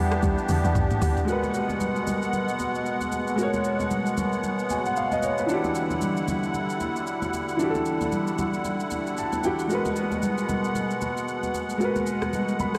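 Amapiano in a soulful, deep mood, cut from a longer piece and soaked in cathedral reverb, where a reedy, shimmering musette accordion holds pumping chords up front as a dark chorused chord stab with diffuse delay and a punchy, woody log drum bass open the first second over a drum fill. A tape-warm electronic kit with knocking kick and smooth hats plays throughout alongside high-tuned, thick-skinned congas, and an intimate concert grand piano with audible action noise enters at 1.2 s to accompany, adding fills near 8.9 s and at the close.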